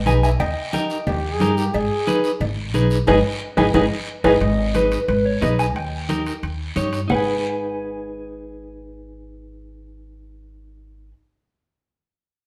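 A woody pizzicato upright bass opens this fiery, driving cumbia excerpt in G# harmonic minor at 179 BPM, joined at once by a dark, picked clean electric guitar accompaniment with tremolo, a mellow fingered electric guitar melody bathed in spring reverb, bright hard-hand congas, a raspy guiro, and ringing cowbell and timbales. From 1.1 to 4.3 seconds a growling trombone adds a gritty second line with vibrato and scooped notes, while a band accent and drum fill push into the next section over chords moving from D# to G#m. The percussion stops at 7.2 seconds, leaving bass and both guitars in a moderate studio room.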